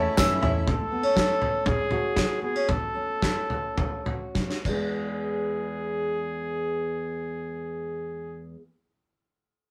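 In a straight 4/4 that slows between 0.7 and 5.0 seconds, this hopeful indie folk excerpt opens on a brief cluster of mellow, felt-muted upright piano, a shimmering octave-doubled twelve-string acoustic guitar, brilliant arpeggios on a bright upright piano with audible action noise and a woody pizzicato upright bass, while a loose, punchy drum kit with dark cymbals rolls into a fill at 4.3 seconds, a fingerpicked steel-string acoustic guitar carries on from 0.7 seconds, and a clear, distant classical-style trumpet sings the melody throughout, heard in a rough rehearsal-room recording with small-room reverb and saturation.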